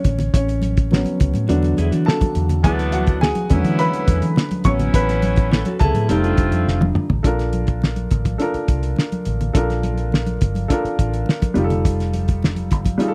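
A straight 4/4 groove at 104 BPM from a cloth-damped, thuddy drum kit with a fat snare and background congas drives this romantic, lush 1970s-style soul excerpt. A round, foam-muted fingered bass sits under a dark, mellow baby grand piano that solos until a drum fill lifts the key from A major to Bb major at 7.2 s, while a slightly broken-up small-amp guitar riff and tight, lightly vibrato horn stabs colour the first half, all in a dry, close vintage studio sound.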